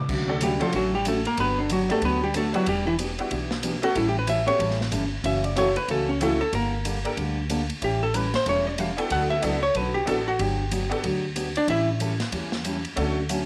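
A dark, clean archtop guitar sits up front, its hollow-body solo running through this short, cheerful western swing cut over a jazzy progression of seventh and ninth chords. A jangly, detuned honky-tonk upright piano and a full-bodied picked acoustic guitar with audible finger squeak fill in the accompaniment, while a woody, growly pizzicato upright bass anchors the low end. A polished big-band drum kit with dark cymbals and a tight kick swings the whole band along under light studio reverb.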